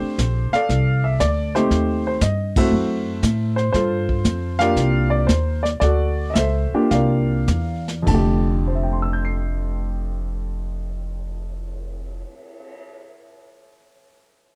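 This jazz piano trio passage, cut from a longer piece, has a playful, warm mood and a relaxed swing feel in four. The baby grand piano carries the melody across a broad range with a natural, up-front tone and a touch of slapback echo, moving through lush extended harmonies such as F6/9, Gm9 and C9sus4. Beneath it, the pizzicato upright bass sounds woody and thumpy on gut strings, while a vintage brush kit adds brushed snare, hi-hat, ride and crash over a punchy kick, its cymbals dark and its top end rolled off. The trio hits a shared accent at 2.5 seconds, then eases the tempo back between 3.7 and 8.1 seconds before settling onto F6/9 again. The recording is dry and close, with the intimate feel of a 1970s studio session.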